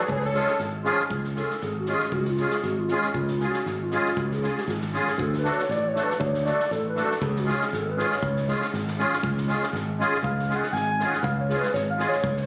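Riding a brisk 2/4 pulse with lightly swung sixteenths, this fiery Balkan wedding-band piece is cut from a longer performance. A dark, distant clarinet in a classical style carries the melody, and from 1.1 seconds it takes a virtuosic solo that runs to the end. Two reedy musette accordions sit beneath it: one adds a brief shimmering second line only in the opening 0.6 seconds, while the other, airy and up front, supplies the accompaniment throughout. A bright, growly fingered electric bass punches through directly, and a loose acoustic drum kit with a natural studio-room sound keeps time on kick and medium-tuned snare. The harmony rests on C#, moves to D at 5.2 seconds and then returns home. The whole recording carries the roomy feel of a moderate recital hall, captured on a phone in the room and filled out with added reverb and compression.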